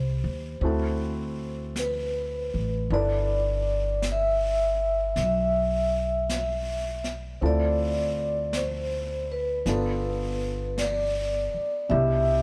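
Set in light reverb and heard from further back in the room, this short fragment of a jazz ballad has a tender, intimate mood and a slow, swung 4/4 feel. A vibraphone played with soft mallets carries the melody, its mellow, ringing tone shaded by a medium motor vibrato. Beneath it, a grand piano supplies the accompaniment with a natural, intimate sound in which the action noise of the instrument is audible. The upright bass sits up front, plucked on gut strings for a woody, thumpy low end, while a brushed drum kit joins at 0.6 s with a high-tuned snare and hi-hat in a natural studio room. The harmony moves from a rootless Am7 to D13, settles on G69 as a new passage opens at 2.9 s, then passes through Dm7 and G9 before reaching Cmaj9.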